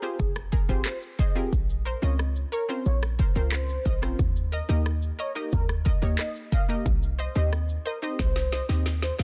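Tough and hypnotic, this dancehall excerpt moves at 90 BPM in Bb dorian, built on an electronic afro-pop drum kit with a deep kick, woody snare with soft clipping, crisp hats, handclaps, rim click and shaker, sitting up front beside a punchy, tight 808-style bass with a sine body and noise layer. A round, warbling analog pluck with chorus carries the chords from Fmadd9 through Bbmadd9, Eb and Cm, while a velvety, mellow synth lead with detuned unison, vibrato, chorus and digital delay sings the melody between Ab4 and F5. The dry, dense, heavily limited mix closes on a drum fill from 8.2 seconds.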